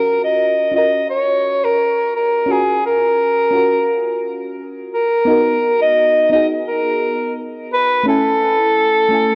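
A wistful, relaxed chillout piece moves at 86 BPM in 4/4 with a gentle swing on the sixteenths, tuned slightly sharp to A4 = 442 Hz, and is heard as a short cut from a longer work. A mellow soprano saxophone carries the melody up front between Ab4 and Eb5, its classical-style tone carrying a light vibrato and a vintage character, with tape echo trailing its phrases. Beneath it, an FM electric piano supplies soft, round accompaniment from A3 to G#5, its fast-attack, decaying notes carrying a dark edge, a faint noise layer, and a shimmer of chorus, phaser and digital delay. Both parts play throughout the 9.3 seconds, moving through Gbmaj7/Db, then Abm9 at 4.9 seconds and Amaj7 at 8.1 seconds. A lush hall reverb with a 2.4-second tail bathes the sound, and the worn cassette quality adds a warbling pitch drift that gives the passage a nostalgic, hazy feel.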